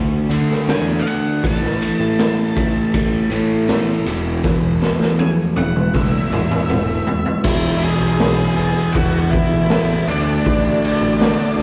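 Bittersweet and anthemic, this 11.6-second excerpt of quiet-loud alternative rock moves at a steady 80 BPM in E mixolydian, captured as a live gig heard through the venue's PA with recital hall reverb. A very quiet, compressed twelve-string electric guitar picks warm, clean arpeggios until 7.5 s, while a bright, crunchy overdriven guitar plays a riff in the background and a very quiet, sludgy distorted guitar plays a riff beneath it. A growly fuzz bass drives the low end, and the raw garage drum kit, saturated and gritty with a punchy kick and rolled-off top, sits up front from 0.3 s and plays a fill from 4.4 s to 7.5 s. From 0.7 s a dark octave-fuzz lead guitar with slapback echo carries the melody, soloing through the opening stretch over chords moving from D to A5 to Esus4. From 7.4 s a very quiet chamber string section with a reedy, gut-string, period-style tone adds sustained bowed chords up to the cut, and at 7.5 s the harmony lands on E and later Dadd9.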